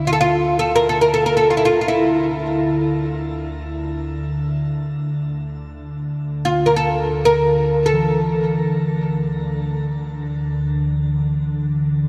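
Wet cathedral reverb with a 5.9-second tail envelops this dark, meditative, spacious world piece in free time, cut from a longer work in D hirajoshi: a woody, fretless oud with double strings sits up front, plectrum-plucked and carrying the melody through shimmer reverb and tape echo until 10.7 seconds; an ethereal, airy pad of detuned sawtooth and triangle voices holds a mellow drone with ensemble chorus throughout; and a bronze singing bowl struck with a suede striker enters at 7.9 seconds, ringing and metallic with slow beating, in the background under its own shimmer reverb.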